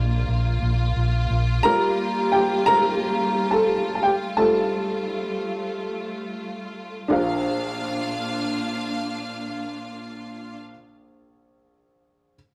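Warm and anthemic, this pop excerpt moves at an unhurried 88 BPM in a straight 4/4, settled in Bb major. A clear, woody upright piano sits up front and carries the accompaniment throughout, with a natural, short-sustained tone and a solo stretch over the first 7.1 seconds as the chords pass from Bb through Gm7 and Fadd9 before returning to Bb. A close, lush studio string section holds bowed, vibrato-tinged sustained chords beneath it until 10.6 seconds. For just the opening 1.6 seconds, a dark, foam-muted fingered electric bass adds a round, punchy note up front, alongside a barely audible electronic downlifter. The excerpt has the rough feel of a rehearsal-room recording, set in a moderate stone-room reverb that gives the sound a sense of space.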